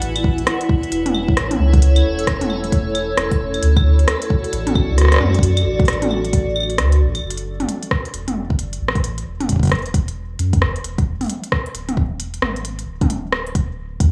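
IDM at 133 BPM in F# minor, this intricate, melancholic passage from a longer piece moves with a 16th-note swing through chords of A, D, F#7(no3) and E7. A cloudy, granular pad holds sustained chords with a slow attack, long release and its own reverb, its blurred, evolving tone drifting above until it stops at 7.2 seconds. Beneath it, a round, sine-based sub bass sits up front with a fast attack and mellow, sustained notes, carrying through to the end. An organic electronic drum kit of claves, smooth hi-hats, rim clicks and toms shares the front with a deep electronic kick, both tape-warm and re-recorded in a large room. The kick enters at 0.2 seconds and briefly drops out just before the second section begins. A light, digital small-room ambience frames the whole mix.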